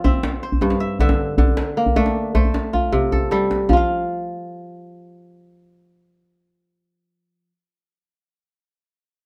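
West African traditional music in 12/8 at 104 BPM in F major, hypnotic and joyful, this short cut from a longer piece sets a bright, ringing kora fingerpicking crisp arpeggios up front against a deep, soft-handed djembe that plays a fill from 2.7 seconds and drops out at 3.9 seconds, leaving the kora alone in a dark mix with light reverb.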